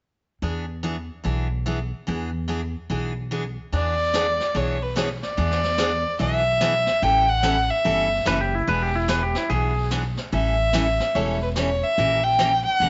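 Cheerful and swinging, this western swing country excerpt moves at 145 BPM in 4/4 with a swung eighth-note feel, centred on E mixolydian and moving through E7, A7 and a closing A#dim7. It opens at 0.4 s with a bright, picked steel-string acoustic guitar, its fresh strings carrying a touch of finger squeak, over a thumpy, woody pizzicato upright bass sitting up front. At 3.7 s a dark, bowed fiddle takes the melody, close and intimate with light vibrato, while a jazz brush kit of brushed and high-tuned snare and hi-hat settles into the background with a rolled-off top. Briefly, from 8.3 s, a clean, twangy lap steel guitar adds a compressed, fingered slide line as a second voice. The sound is dull-edged at the very top, with light small-room reverb giving the ensemble an intimate studio feel.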